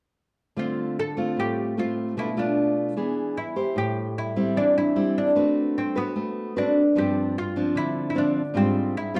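Set in a straight 4/4 bossa nova groove, this sophisticated, sunny fragment from a longer piece pairs a mellow, woody oud, plectrum-plucked on fretless double strings, with a fingerpicked classical nylon-string guitar accompaniment where finger squeak is audible. Both parts sit up front from 0.6 s to 9.2 s, with the deep oud carrying the melody, while the harmony moves from Dm7 through Bm7b5 and E7 into a second section at 3.8 s built on Am7, D6/A, G7sus4 and Fmadd9/Ab. A lush large-studio reverb and a dark production tone wrap the duo in a soft, roomy glow.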